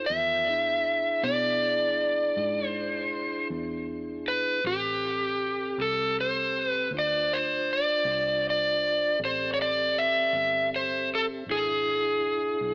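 Heard through a lo-fi, AM-radio sound with light room reverb, this soulful, brooding slow blues in A minor at 53 BPM in 12/8 puts an overdriven, dark slide guitar up front with digital delay, carrying the melody over sustained chords from a flute-like tonewheel organ turning through a slow rotary speaker and a round, foam-muted, punchy fingered electric bass, moving from E7 through Am7 and Dm7 back to E7 at 11.5 seconds.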